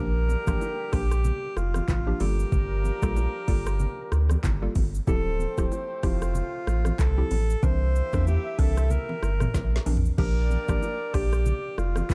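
A swung sixteenth-note afrobeats groove in 4/4 drives this sultry, smooth excerpt. At 0.3 seconds an electronic, up-front afro-pop drum kit enters, with a deep kick, woody snare, metallic hats, handclaps, rim clicks, shaker, toms and crash, along with soft-handed bongos and congas in the background. Underneath, a round, warm sine sub bass sits close and deep, while a hollow, bouncy square-wave pluck with a detuned chorus sheen plays the accompaniment until 11.3 seconds. A breathy, whispered alto saxophone carries the melody in an intimate pop style through a digital delay, and a tight horn section adds a second line with light vibrato and octave doubling. The harmony moves from Bb6 through Gm9, Dm11 and C9 back to Bb6, with a drum fill just before that return, and the dark, dry production keeps the sound close and unadorned.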